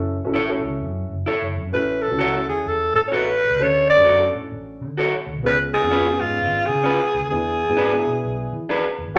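Joyful and warm, this short soul cut moves at 129 BPM in 4/4 with a swung eighth-note feel. A dark, woody upright piano carries the accompaniment through the whole passage while a vintage muted electric bass sits underneath, round and punchy with a foam-damped thud. An electric guitar through a small old amp adds slightly broken-up, lo-fi stabs close to the front from 0.3 seconds. The growling alto saxophone takes the melody at 1.7 seconds, raspy and gritty with jazz-style vibrato, up front yet carrying a roomy, distant air. The harmony moves from F#m7 through A6, Dmaj7 and C#7 to E7, all set in a moderate large studio reverb.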